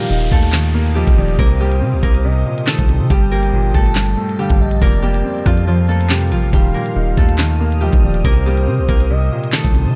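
Tense and cold, this half-time drill excerpt sets a mellow, fingerpicked concert harp melody over a dark grand piano, both softened by a low-pass filter, while a long, deep 808-style bass decays beneath them. Up front, the produced drum kit brings a knocking kick, sharp snare, crisp hats, handclaps and rim clicks, roughened with vintage 12-bit sampler grit. Further back, a smooth gliding portamento lead with chorus, vibrato and digital delay adds a second line, a blurred, evolving granular cloud pad enters at 0.7 seconds with bright sustained chords, and an electronic downlifter opens the passage and runs until 3.1 seconds.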